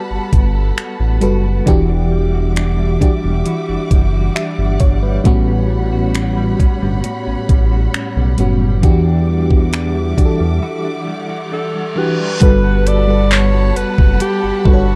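A sensual, moody stretch of contemporary R&B opens on a full-bodied FM electric piano with tremolo, lush bowed strings and a clean, compressed electric guitar playing arpeggios through tremolo and delay in the background. A sawtooth-edged synth bass and an up-front electronic drum kit of knocking kick, metallic hi-hat, finger snaps and handclaps quickly join them. During a break that begins at 10.6 seconds, a reverse cymbal sounds at 11.1 seconds and a breathy, close-miked alto saxophone enters at 11.5 seconds with scooped notes, subtone and vibrato in a jazz-style solo, all set in a dry, dark production.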